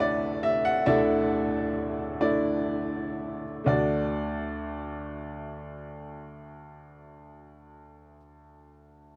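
In a straight 6/8 lilt at 39-47 BPM counted in dotted quarters, this nostalgic, hopeful folk passage cut from a longer piece puts a bright, woody upright piano up front on the melody from D2 to F#5, touched with tape echo, as it slows through the opening 3.7 seconds on a Dsus2 chord before settling onto D major, captured in a dry, close 1970s-style studio with small room ambience.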